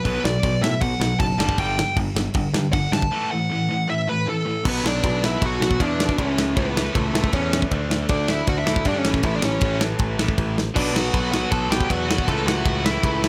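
Urgent and angry, this short cut from a longer punk rock piece drives ahead at 157 BPM in B minor, with a straight 4/4 feel and a dry, close sound. A dark, high-gain lead guitar sits up front from the very start, playing a distorted solo melody through the opening 4.7 seconds and carrying the tune throughout. Behind it, a cranked stack guitar grinds out an overdriven riff, while a bright, tight distorted guitar adds its own riff in the background, dropping out after 4.6 seconds and returning at 10.7 seconds. A growly, punchy picked bass anchors the low end, and a tight, mid-forward acoustic drum kit with a medium-tuned snare, tight kick, crash and ride cymbals drives the beat, marked by a drum fill at 10.6 seconds. The chords move from Bm through G5 and A5, then shift to A/C#, D5 and A before circling back to Bm.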